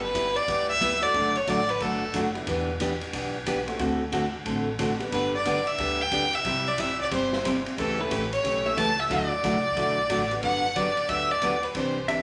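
Swinging in 4/4 at 181 BPM, this cheerful, down-home western swing piece in G major, cut from a longer piece, sets a clear, focused bowed fiddle melody with light vibrato over a bright, full-bodied picked steel-string acoustic guitar, a woody pizzicato upright bass and an airy, polished big-band drum kit with a punchy kick, while a detuned, jangly honky-tonk upright piano sits in the background from 1.0 seconds and a twangy clean lap steel guitar slides in at 12.1 seconds, with a wet large studio reverb over the mix.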